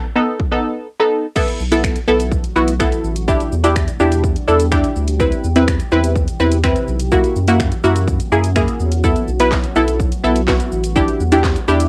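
Recorded at home onto cassette with a light reverb, this driving, bittersweet dance-pop fragment opens on a punchy, detuned sawtooth chord stab that warbles through chorus and phaser and pumps with sidechain compression. An overdriven house kit with a cracking snare, handclaps, finger snaps, shaker, hi-hat and crash enters at 0.4 s, followed by a thick, saturated sub bass at 1.6 s and, at 2.1 s, an ethereal, granular pad with octave-up shimmer that sits dark in the background. The harmony moves from B7 to B7sus4, then through Em7, Cmaj7 and F#7 before circling back to B7sus4 and Em7.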